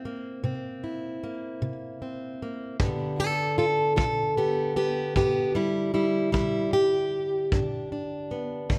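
Set in a moderate concert-hall reverb, this rollicking, gritty acoustic country blues excerpt in 12/8 at 51 BPM features an up-front, fingerpicked, plugged-in steel-string acoustic guitar with slapback echo carrying the melody from G2 to A4 over C7 and G chords, joined at 2.8 seconds by a punchy, mid-forward kick drum with a rolled-off top.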